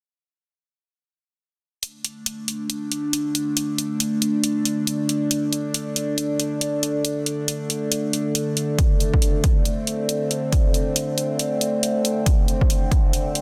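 A swung, half-time 4/4 pulse at 138 BPM drives this cavernous, brooding deep dubstep fragment. An overdriven electronic hi-hat enters at 1.8 s, and a nasal, resonant drone arrives at 2.2 s, sustaining a D5 chord with chorus, slow-attack sawtooth-and-sine tones and moving overtones. A punchy, up-front overdriven kick lands at 8.8 s, all set in a lush digital hall reverb under a dense, heavily limited modern master.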